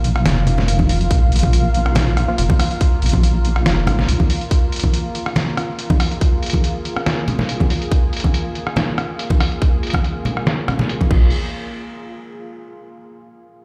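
Heavy and cavernous, this deep dubstep cut from a longer piece moves at 141 BPM in a half-time 4/4 with a light swing on the sixteenths, tuned to A4 = 438 Hz and resting on a Bb5 chord. A moody, mellow ambient pad built from detuned sawtooth and sine layers with a sub octave fades in slowly and sustains beneath the whole passage, softened by chorus and its own reverb. Up front, a saturated, detuned wobble bass with chorus rumbles until 4.2 seconds and returns briefly at the close, while a tight, layered electronic kick enters from 0.8 seconds. A gritty, tape-warm sampler-style kit adds crash, hi-hat, rim click and a pitched-down snare, all dulled by low-pass filtering, alongside damped, low-tuned congas with thick skins and a dub echo. Around 2.3 seconds a very quiet, nasal chord stab with ring modulation and phaser flickers past, and the whole track sounds as if played on a big sound system in a bare stone room.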